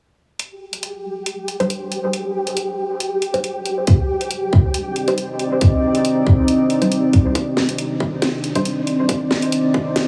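A half-time feel with lightly swung sixteenths drives this dark, brooding deep dubstep excerpt, opening on a garage drum kit of bright hi-hats and a cracking snare. A flickering, grainy texture with a mellow granular, reverberant character drifts in beneath. Filtered dub chord stabs follow, muted and full-bodied, with a detuned sawtooth edge, a fast filter pluck, phaser and dub echo. A tight, layered electronic kick arrives up front at 3.9 s, and at 4.9 s a moody, slow-attack ambient pad of detuned saws and a sine sub octave joins with chorus and its own reverb, sitting prominently in the mix. From 7.4 s the texture drops away and the stabs take a filter sweep as the track builds, all set in a huge, long-tailed reverb and a heavily compressed, radio-like sound with small room ambience.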